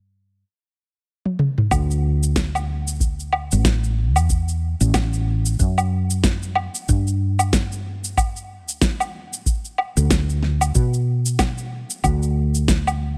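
A relaxed 4/4 groove at 93 BPM, swung on the sixteenths, sets a sunny, easygoing sunset chillout mood in D major, tuned slightly low. A woody fretless electric bass opens the fragment alone, its round, hollow-body tone sitting up front with a subtle chorus as it moves between A1 and B2. A smooth R&B drum kit arrives at 1.3 s with a short fill, bringing a fat, tape-warm snare, toms, cabasa and woodblock in a produced, forward sound. At 1.7 s an electronic kick drum joins, deep, analog and dry with a gritty overdrive, and the groove settles into its main section. The mix is dry, with little reverb on the parts.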